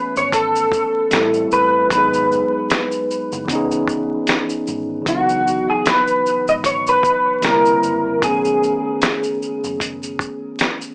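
Heard through vinyl crackle and a small-speaker tone with a moderate studio reverb, this nostalgic, hazy lo-fi hip hop excerpt in C# minor at 76 BPM sets a slightly broken-up, picked electric guitar melody with ensemble chorus, tape echo and a low-pass filter up front over a worn, slightly out-of-tune tine electric piano that is lightly overdriven and filtered, a gritty sampler-style drum kit with thumpy kick, fat snare, hi-hat and shaker, and a dark, round, foam-muted fingered bass sitting in the background, with the guitar stopping at 9.8 seconds while the piano and drums carry on to 10.9 seconds.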